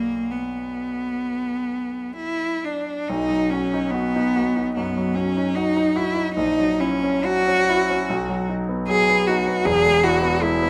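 Rubato in a slow four, this melancholic, solemn romantic classical fragment pairs a focused, bowed solo cello singing the melody with vibrato up front against an intimate, polished grand piano accompaniment whose deep bass and audible action noise come through the close, detailed miking, all set in a recital hall's lingering reverb as the harmony brightens from minor to major at 3.1 s.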